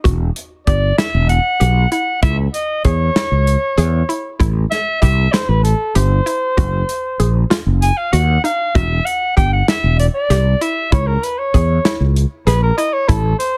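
A dense, heavily limited modern mix with light reverb carries this driving, intricate cut from a longer progressive instrumental piece in 7/8, tuned to A4 = 436 Hz. A mellow soprano saxophone with light vibrato and plate reverb sings the solo melody up front from 0.7 seconds, over a hollow, detuned square-wave pluck playing chorused, plate-washed arpeggios, a growly fretless electric bass, and a tight soul kit of hi-hat, kick and snare with a rolled-off top. The harmony moves from Emadd9 through C#m, Am7 and F#sus2 before returning to Emadd9 and C#m.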